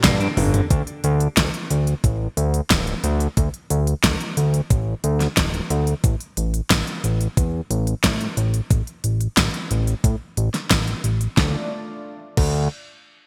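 Moody and cinematic, this synthwave excerpt moves at 90 BPM in a straight 4/4, in D minor, with a bright 1980s-style digital sheen and light reverb. A thumpy, tape-warm electronic kick and a layered pop drum kit with a fat snare, crisp hats, crash cymbal and toms open with a drum fill in the first 0.7 seconds, the kit carrying gated reverb. A fat, saturated analog bass with a nasal, evolving sawtooth-and-square tone sits up front throughout, pumping with sidechain compression, while a filter sweep moves across it from 0.7 to 11.4 seconds. A shimmering, retro pulse-width pad holds sustained chords in the background, heard only briefly at the start and again from 11.4 seconds, when the harmony settles on D minor. A clean, picked electric guitar plays delayed arpeggios for just the opening moment before dropping away.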